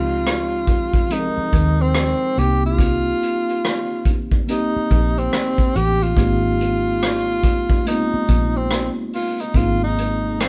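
Lightly reverberant and played live in one room, this short, sensual neo-soul R&B cut at 71 BPM in Ab major sets a breathy, up-front tenor saxophone melody with light vibrato and scooped notes over a mellow tine electric piano heard through its built-in speakers and a dark, round, foam-muted fingered electric bass, while a distant, roomy acoustic kit played with bundle sticks enters at 0.3 seconds with a punchy kick, hi-hat and rim click, all swinging gently through Dbmaj9#11, Cm7 and Abmaj7.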